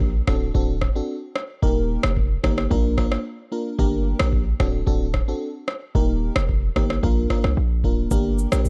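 This afrobeats cut has a sultry, mellow mood and a straight four-beat feel, taken from a longer piece and running about 8.7 seconds, most of it a break. An FM electric piano layered with a soft pad carries the accompaniment, its lush, dreamy tone shimmering with chorus as it cycles through D7, Eb, Bb and Gm. Beneath it, a hard-hitting 808-style bass delivers punchy, heavy sine notes with a fast attack that decays away. A booming, overdriven analog drum machine sits up front with a deep kick, rim clicks and shaker, re-recorded in a small room. The whole recording has a dry, gritty hardware character set in a digital ambience.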